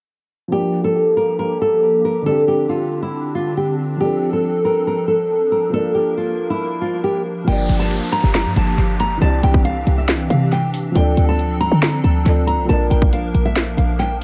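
A heavy half-time trap pulse drives this menacing, melancholic hip hop excerpt, though the beat holds back at first. Over the opening, a dark, fingerpicked nylon-string guitar carries the melody up front, softened by a low-pass filter and trailed by tape echo. Beneath it, a mellow concert grand piano with audible action noise and a boxy, deep low register plays accompaniment, while a hollow, flute-like pad holds detuned, warbling chords thickened with ensemble chorus. At 7.5 seconds the trap kit and a punchy, tight 808-style bass arrive, the drums bringing a hard-clipped kick, sharp snare, handclaps and bright hi-hats treated with overdrive and tape echo, and a faint electronic downlifter sits low in the mix until 11.0 seconds. The harmony circles through Gm7, Csus2, Dm7 and Bb, with Cadd9 replacing Csus2 once the beat enters, all set in a moderate spring reverb within an echo-heavy mix.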